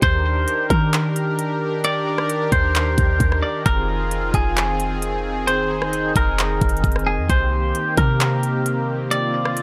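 This atmospheric cloud-rap excerpt in Eb major floats along at 132 BPM in 4/4 with a half-time feel, moving dreamily through Ebmaj7, Fm7 at 3.7 seconds and Cm7 at 7.3 seconds. A clean, twangy electric guitar, fingered and compressed, carries the melody up front, its notes trailing through a tape echo. Underneath, an analog pad built from detuned sawtooth tones holds soft-attack chords that sound smooth yet bright, shimmering with chorus and tremolo while sidechain pumping makes it breathe. A deep, boomy 808-style bass with a sine tone strikes with a fast attack and decays mellowly. Up front, the electronic trap kit pairs a knocking kick and crisp hi-hats with handclaps and rim clicks. Every part plays throughout, set in a dry, gritty hardware recording with a digital ambience.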